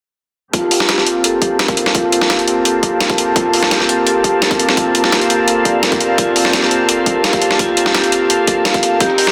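A vibraphone played with hard mallets spins metallic, ringing arpeggios between F4 and F5 in this rolling, soulful liquid drum and bass excerpt, passing through tape echo and a low-pass filter that sweeps across its part. Alongside it, a rich chamber string section holds sustained chords over a Gm11 harmony. Its earthy, bowed ensemble tone carries light vibrato, vintage 12-bit sampler grit, sidechain pumping and a filter sweep of its own. A dusty soul sampler-style kit sits up front with a gritty, compressed hi-hat and a medium-tuned snare, both high-passed. A tight, tape-tinged electronic kick lies lower in the mix, and a barely audible, pitched-up electronic hi-hat adds a faint extra layer. The groove runs at 170 BPM in straight 4/4 in G minor, with every part entering at 0.5 seconds, and a lush hall reverb and dense, heavily limited modern master finish the sound.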